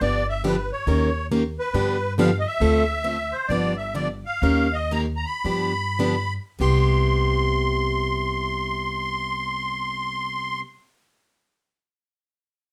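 Lightly reverberant, this charming, playful cut from a longer acoustic string swing piece puts a reedy, shimmering musette accordion melody up front beside a boxy, picked parlour steel-string guitar with fresh strings, over a woody, thumpy gut-string upright bass, slowing from 2.6 to 6.6 seconds before settling onto a Cmaj7 chord.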